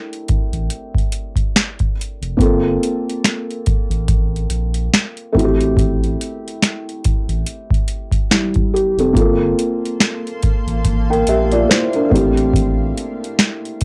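Reflective and nostalgic, this lo-fi hip hop excerpt moves at an unhurried 71 BPM in 4/4 with a gentle swing on the sixteenths, tuned slightly flat of standard pitch. A felt-muted upright piano carries the accompaniment from the start, its soft, boxy tone sitting up front with audible action noise, cassette tape coloring and a plate reverb giving it an intimate, dusky character. Entering just after it, a booming analog drum machine also sits up front and sets the groove with a deep kick, crisp snare, metallic hi-hats and finger snaps, all carrying a tape-warm tone. A round sine sub bass enters at 0.5 seconds, deep and sustained under tube saturation, while the harmony drifts between Am7 and Gm11. Near the end, from 10.1 to 12.5 seconds, a granular cloud pad blooms faintly with blurred, detuned sustained chords and a long release. The whole piece has the light reverb and homespun feel of a cassette home recording.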